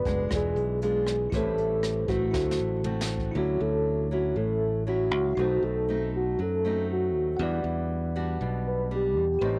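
Bossa nova with a breezy, sophisticated air, this cassette-worn home recording features a brushed jazz drum kit, a punchy kick and a high-tuned snare that play a fill from 2.3 s before the kit stops at 3.3 s. A soft, round, octave-layered synth lead carries the melody with chorus, tremolo and vibrato, then takes a dark-toned solo from 3.3 s. Beneath it, a fingerpicked nylon-string guitar with fresh strings, a bell-like tine electric piano in the background and an up-front, tube-saturated fingered electric bass play through jazzy extended chords in light reverb and small-room ambience.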